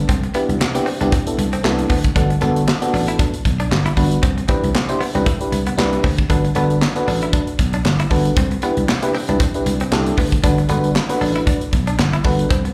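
A swung 16th-note groove at 116 BPM drives this danceable, late-night early-eighties boogie funk, where a punchy, growly slap bass and an up-front acoustic drum kit with handclaps, hi-hat, snare and a tight kick support a glassy, bell-like FM electric piano with chorus and slapback echo and a twangy, clean guitar riff bathed in lush chorus, the harmony alternating between Cmaj7 and Gmaj9 as the sound comes across like a live gig through a venue's PA, with club reverb and small-room ambience.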